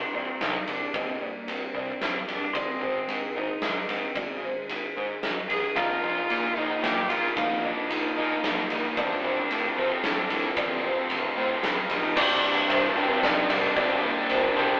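Heard through a narrow telephone-like filter, this cut from a longer piece sounds like a band playing live in one stone room, its wet reverb lending a resonant ring. It is melancholic, cinematic post-rock in C minor at 112 BPM in a straight 3/4. A bowed cello sits in the background, carrying the melody with an airy, sul tasto tone, light vibrato and a soft attack. Beneath it, a very quiet pedal steel guitar holds sustained chords with slide and volume swells, a dark, thickly felted upright piano traces intimate arpeggios, and a faint, twangy twelve-string electric guitar adds clean, chiming arpeggios. A fuzzy, overdriven electric bass and a huge, up-front arena drum kit with a fat snare, punchy kick, crash and ride cymbals give the music its weight. A bright, overdriven guitar riff joins at 5.8 seconds, and as the chords move to Csus2 at 12.2 seconds the twelve-string drops away while a second, scooped and compressed distorted guitar riff enters.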